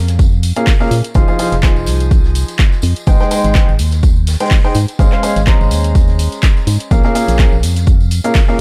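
A dark, small-room production frames this soulful, bittersweet piano house cut at 125 BPM in 4/4, swung on the sixteenths and tuned to A4 = 437 Hz, moving through Bbm7, Fm7, Abmaj7 and Dbmaj7/Ab. An overdriven, punchy analog kick sits up front beside a hollow, percussive FM bass with an organ-like tone and sidechain pumping. An overdriven analog drum machine adds handclaps, hi-hat and shaker, a compressed, saturated tambourine hangs in the background, and a very quiet, distant soul kit supplies hi-hat and snare. From 0.6 s a clear, woody upright piano riff enters with sidechain pumping and digital delay.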